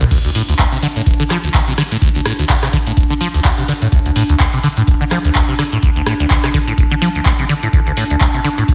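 Acid house at 126 BPM in D minor, with a 16th-note swing of 57%, this raw, gritty excerpt is cut from a longer piece and runs as a single section of about 8.7 seconds. A squelchy, resonant sawtooth acid bass carries the riff up front, spanning D1 to F3 with fast-attack, decaying notes, a filter sweep, phaser, overdrive and analog chorus, all pumping against the sidechain. A booming analog drum machine runs from the very start, its metallic hats sitting among handclaps, rim clicks, toms and crash cymbal, and a deep, tape-warm electronic kick drives underneath from 0.1 seconds. From 0.3 seconds, a warbling, nostalgic pad built from detuned square and triangle waves holds mellow, slow-attack chords around D4, bathed in chorus and its own reverb and also breathing with the sidechain. A grainy acoustic cabasa ticks in the background in a small room, while the whole mix carries light reverb and digital ambience under a heavily compressed, radio-like sound.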